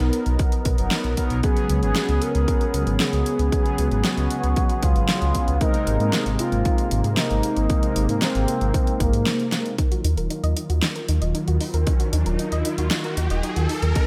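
A cinematic, nocturnal synthwave excerpt in Eb minor moves at 115 BPM in a straight 4/4. A dark detuned saw bass rumbles up front with tube saturation and sidechain pumping, while a punchy layered kick enters at 0.4 seconds alongside a pop kit of fat snare and bright hats. Behind them, a smooth analog pad holds sustained chords with chorus and pumping, and a mellow, brassy synth plays stabs through chorus and digital delay over chords moving from Bmaj7 through Db7sus4 and Abadd9. From 1.4 seconds an expressive portamento lead carries the melody, its warbling vibrato roughened by vintage 12-bit sampler grit and echoed by delay. After a short break and a drum fill near 9.5 seconds, the harmony settles on Ebmadd9 as a soft, round pluck takes over with decaying arpeggios. An electronic riser builds from 11.1 seconds under light reverb and digital ambience.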